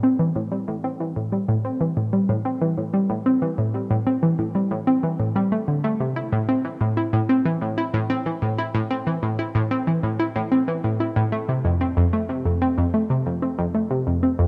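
Mysterious and cosmic, this ambient fragment from a longer piece features a lone analog pluck playing through the full 14.5 seconds, round and detuned with a sawtooth-and-square edge, a noise layer, a filter sweep, a fast attack and short decay, set up front with chorus and delay in a straight 4/4 and carried by a moderate plate reverb and the character of cassette tape.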